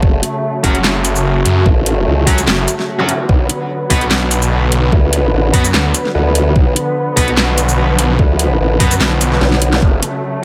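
Heavy and chaotic, this heavy wobble dubstep excerpt runs at 147 BPM in a half-time feel, moving from F# minor to B minor. A saturated formant-sweep wobble bass with chorus and a snarling, growling, detuned saw bass with distortion sit up front over a knocking electronic kick and a dubstep kit with a huge snare, metallic hats, handclaps and shaker, while a dark, woody string section holds sustained chords under sidechain pumping and a low-pass filter. Bright distorted guitar stabs with tape echo and a couple of electronic zaps sit in the background, and a drum fill arrives at 9.4 seconds, all in light reverb.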